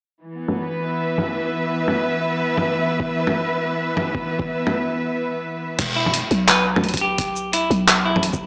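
Tense and cinematic, this half-time drum and bass excerpt moves at 172 BPM in E minor with a swung sixteenth-note feel. A rich, bowed symphonic cello section opens at 0.2 seconds, holding smooth, vibrato-laden chords up front, shaped by sidechain pumping and a low-pass filter. A sampler-style drum kit enters at 0.5 seconds, pitched down, compressed and gritty, with crash cymbal, handclaps, hi-hat, shaker and toms, all under a low-pass filter that sweeps across the opening stretch. A thumpy electronic kick joins at 3.0 seconds, and after a brief break the drop arrives at 5.8 seconds, where the cellos stop and a growling, buzzy 808-style bass takes the low end with fast-attack, decaying notes. A clean, twangy electric guitar adds bright picked arpeggios through tape echo, all set in a moderate digital room reverb with a dry, gritty, small-speaker character.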